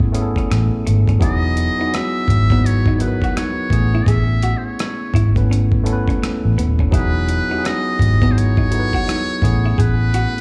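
This sounds like a live club set heard through the venue's PA, with the room's reverb around the band. It's a relaxed, warm slice of neo-soul R&B, cut from a longer piece, with a lazy swung sixteenth-note feel. A gritty, compressed sampler-style drum kit with a thumpy kick, hi-hat and rim click sits up front beside a dark, round, punchy muted electric bass. A barky tine electric piano, lightly overdriven through a combo amp and touched with slapback echo, comps over the gentle sway between Amaj7 and Emaj9. A clean, picked hollow-body jazz guitar hovers in the background with its own slapback echo. From 1.2 seconds, a buzzy, thin trumpet with a metal mute carries the solo melody in a smooth jazz style with light vibrato, its brilliant tone also echoed with slapback.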